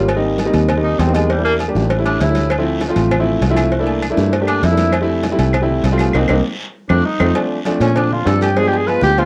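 A breathy, mellow tenor saxophone carries a vibrato-laden solo throughout this sunny, sophisticated Afro-Cuban jazz excerpt in F major at 198 BPM, its subtone and scooped notes heard up front with the cassette-tape grain it shares with the natural grand piano accompaniment. A round, foam-muted fingered electric bass anchors the harmony as it moves from Abmaj7 through Dm7 and C13 toward G7b9, while a tight, high cowbell, ringing agogo bells and timbales, distant congas and a raspy, saturated guiro fill the small room. Woody claves enter at 2.5 seconds, and a band accent at 6.1 seconds leads into a drum fill before the section repeats at 7.4 seconds.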